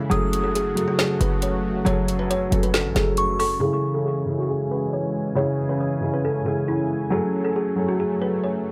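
A half-time trap beat at 137 BPM, built from a trap drum kit with a woody snare and metallic hats and a punchy, tight 808-style bass, drives the first 3.6 seconds of this brooding, dark C# minor hip hop excerpt, while a thumbnail-plucked kalimba carries the melody in dub echo over a soft, felt-muted upright piano with audible action noise, a detuned sawtooth analog pad, and a glassy, warbling FM synth bell with tremolo that stops at 3.6 seconds, before a filter sweep runs from 3.6 to 8.7 seconds through the echo-heavy mix.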